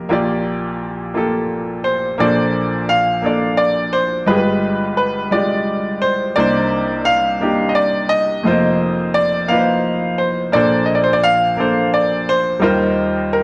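A brilliant, natural-sounding baby grand piano opens this uplifting, soulful gospel fragment in a straight 6/8 with rich chords such as Bbmaj9, G7b9, Cm9 and F7sus4, and at 1.8 seconds a second, worn-toned grand piano with short sustain and a slapback echo enters up front with the melody, both pianos sitting in a moderate recital-hall reverb.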